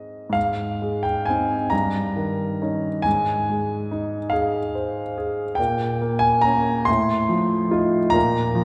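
Mournful and yearning, this brief excerpt from a romantic classical nocturne unfolds in Ab major at a slow, rubato 12/8 (around 38-49 BPM in dotted quarters), with a solo upright piano, woody and intimate with audible action noise and long sustain, sitting up front in a wet concert hall reverb as the harmony moves from Ab through Eb7/G and Bbm to F7/A before the cut at 8.6 seconds.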